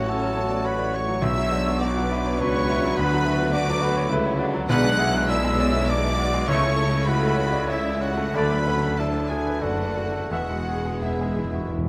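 Heard close and detailed in a moderate recital-hall reverb, this lush, lyrical romantic excerpt in rubato 3/4 (80-107 BPM) sets a polished concert grand piano with deep bass and an intense violin section in the melody above a hollow silver flute, an oboe and a smooth-topped second violin section in the background, with rich violas and a soft-attack bassoon in accompaniment, mellow French horns and trombones holding chords under tight trumpet stabs, expressive cellos, focused double basses and a roomy tuba on the bass, and round calf-headed timpani adding a soft-mallet fill at 10.3 s as the chords move from F#m/A through Bm and E7/B to E.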